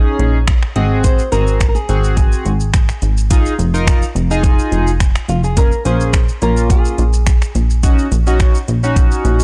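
A faint downlifter fades under a glossy, chorused polysynth and a punchy, plucky analog bass, both pumping to the sidechain, opening this energetic, bittersweet dance-pop excerpt in Bb minor at 106 BPM. A smooth R&B kit with a knocking kick, metallic hats, finger snaps and shaker arrives up front at 0.2 seconds, and at 0.8 seconds a fingerpicked flamenco guitar with fresh strings and audible finger squeak carries the melody through a digital delay until 7.5 seconds. The chords move from Ab7 through Fm7 and Bbm7 in a dark, dry production.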